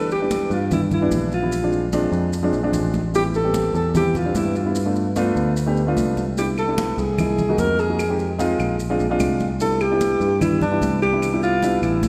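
Bathed in a long church reverb of about 3.0 seconds, this sophisticated, danceable Afro-Cuban jazz excerpt moves at 148 BPM in a straight 4/4 in C major, its chords running from G13 through Am7 and Fm7 to a closing Cmaj9. Up front, a mellow alto saxophone carries the melody with light vibrato, subtone and a soft attack, alongside a dark, intimate baby grand piano whose accompaniment has short sustain and audible action noise. A round, picked electric bass joins at 0.5 seconds, bright high-tuned congas sit in the background with close, grainy maracas, and woody claves enter at 6.6 seconds.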